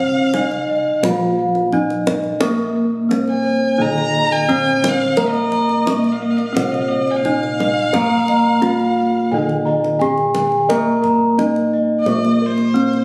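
This serene, ceremonial Javanese gamelan excerpt sets a ringing bronze metallophone melody struck with wooden mallets, with a vintage, band-limited tone, against a distant, clear bowed erhu line that glides with vibrato and portamento, while further metallophones carry accompaniment and arpeggios, one shimmering with paired tuning and another mellow under padded mallets, as round, bright bossed gongs beat out the bass and a deep, dry kendang is played with hard hands, joined at 7.9 s by soft, padded bossed-gong arpeggios in the background, all heard through moderate stage reverb and compression as if captured on a phone amid club ambience.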